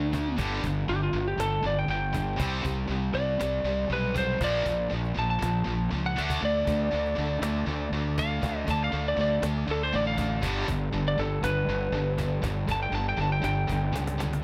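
A dark, slightly broken-up lead guitar, compressed and up front with analog delay, solos through this energetic, anthemic hard rock excerpt at 119 BPM, over a growly, punchy fuzz bass and two bright, distorted picked rhythm guitars sitting in the background on the riff. A snappy, close cajon with snares drives the beat, with fills at 6.2 seconds and again at the close, as the chords move from G5 through C5, Bb and D5 before settling on G. From 6.4 seconds a clear tonewheel organ adds sustained chords through a slow rotary speaker, with key click and vibrato, in a light digital ambience.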